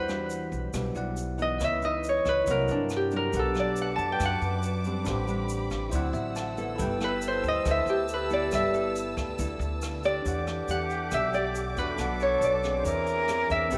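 A straight 4/4 bossa nova groove at 139 BPM sets a relaxed, sophisticated mood in G major, turning toward E minor at 10.3 seconds in this short section cut from a longer piece. Up front, a ringing, fingerpicked Celtic harp carries the melody with tape echo, taking a solo through the first 10.3 seconds, while a bell-like tine electric piano and a classical nylon-string guitar with audible finger squeak fill out the accompaniment, the piano adding a brief fill between 5.9 and 6.8 seconds. A woody, thumpy pizzicato upright bass anchors the low end beneath a jazz brush drum kit, with its boomy kick, hi-hat and rim click sitting in the background, and a grainy, close egg shaker adds sparkle. From 3.3 seconds a dark, bowed studio violin section lays down sustained chords with vibrato, and an airy silver concert flute enters on a tongued, expressive second line as the harmony shifts. Chords such as Em9, C7#11, D9, G69 and Eaug7 give the harmony a jazzy colour, and a moderate echo chamber reverb with small room ambience surrounds the ensemble.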